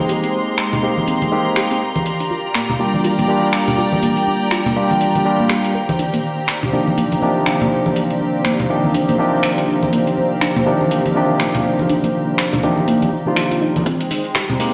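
A swung 4/4 groove at 122 BPM drives this deep, hypnotic deep house passage in C minor. An overdriven drum kit of cabasa, finger snaps and metallic hi-hats is joined by layered congas from 0.7 s, and a deep, overdriven electronic kick arrives only at 13.9 s. A bright, barky tine electric piano sits up front with filtered, delayed stabs over Abmaj7, Gm7 and Cm11 chords, backed by a smooth, detuned analog pad, an intimate bowed string section played sul tasto, and a lo-fi, warbling pluck tracing arpeggios through tape echo, with pad, keys, strings and pluck pumping under sidechain, while a lush hall reverb and the stone-room ring of a big sound system in a bare space surround this section cut from a longer piece.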